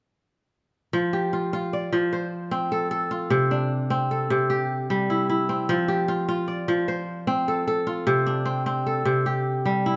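West African traditional music in 12/8, moving at 101 beats per minute in F major, with a flowing, warm mood in this short cut from a longer piece. A solo kora, fingerpicked and up front, plays ringing, crisp arpeggios from 0.9 to 10.0 seconds over chords that alternate between F and C. Close, detailed microphones capture the acoustic instrument within a moderate recital-hall reverb.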